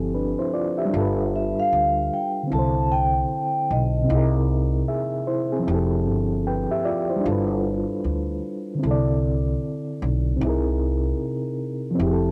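A laid-back 4/4 groove at 76 BPM with a strong swing on the sixteenths sets this reflective, melancholic lo-fi hip hop fragment, cut from a longer piece and running about 12.3 seconds. A reedy electric piano carries the accompaniment throughout, its fast tremolo shimmering through a cassette-tape haze and a low-pass filter that softens its top. Underneath, a woody, growly upright bass, plucked pizzicato on steel strings, sits up front in the low register for the whole span. A vibraphone struck with soft mallets enters at 1.4 seconds and stops at 4.5 seconds, offering a brief, airy, metallic melody with slow motor vibrato, its ring filtered, tape-worn and trailed by plate reverb and analog delay. The harmony cycles twice through Fmaj9, G7, C69 and C7alt, and the home cassette recording in a moderate room gives the whole piece a hushed, intimate character.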